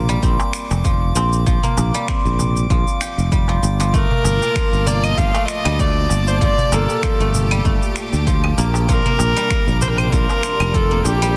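A rich, intimate kamancheh enters at 3.9 seconds with an airy bow, light vibrato and gliding portamento, its tape-echoed melody sitting up front in this earthy, meditative organic downtempo cut at 97 BPM with a gentle 16th-note swing. Beneath it, a silvery, fingerpicked guzheng rings out filtered, echoing arpeggios, while a growly fretless electric bass sustains up front and direct. A punchy, layered electronic kick, an electronic shaker with finger snaps and claves, and a crisp, dry darbuka played with soft hands keep the groove; a lush symphonic string section with sidechain pumping and a drifting, glassy sine texture bathed in chorus and reverb hover in the background over chords moving from Bb6/9 to Gm9 and back.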